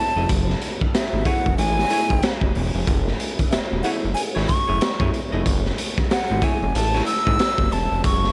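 A breathy jazz flute with vibrato and tape echo opens this cool, sly funk excerpt in F#m9 at 93 BPM with a swung sixteenth feel, over dark, clean picked hollow-body electric guitar and a very quiet, lightly overdriven tonewheel organ with key click and slow rotary speaker, before a fat, detuned sawtooth bass with a filter pluck arrives up front at 0.2 seconds, a gritty, lo-fi garage drum kit with a punchy kick and high-tuned snare follows at 0.3 seconds, and the guitar drops out at 7.4 seconds, all in a small room.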